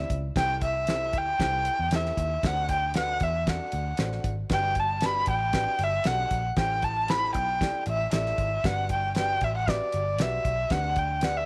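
Light reverb and a studio ambience frame this warm, uplifting cut of uptempo 1960s-style soul at 116 BPM in G major, where an up-front, nasal erhu carries the melody with light vibrato, portamento and an airy bow over a dark, woody, slightly detuned upright piano, a round, foam-muted picked electric bass and a cloth-damped, thuddy drum kit with a fat snare, a tight kick and a gritty, rolled-off top.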